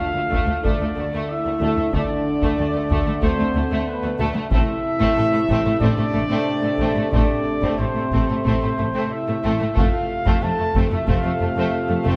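Dark and relentless, this cut from a longer epic orchestral film score moves in a straight 4/4 through a brooding minor progression. A taiko ensemble played with heavy sticks drives the passage from 0.3 s to 11.7 s, its acoustic sound carrying a small-room character, while a clear trumpet section punctuates with stabs. Mellow, tight French horns and bright trombones hold sustained chords beneath, the trombones sitting further back. In the background, a smooth, warm violin section carries the melody, shadowed by a lush, distant, focused second violin line, while a very quiet viola section adds intense accompaniment with light vibrato. Rich cellos and double basses anchor the low end with an even, bowed bass, all set in a moderate scoring-stage reverb.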